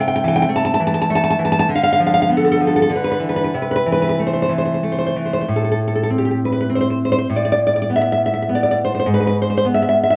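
A fingerpicked nylon-string guitar plays alone and up front in this passionate, wistful romantic piece for solo classical guitar, its warm tone carrying audible finger squeak as it moves through a rubato 3/4 metre over the full 10.2 seconds. The harmony drifts from Am/C through diminished and suspended colours before settling on E/G# at 9.1 seconds, and a short phrase heard from the start returns at 5.5 seconds. Light reverb and the worn, warbly pitch drift of old cassette tape lend the sound a faded, nostalgic cast, as if this fragment were cut from a longer performance.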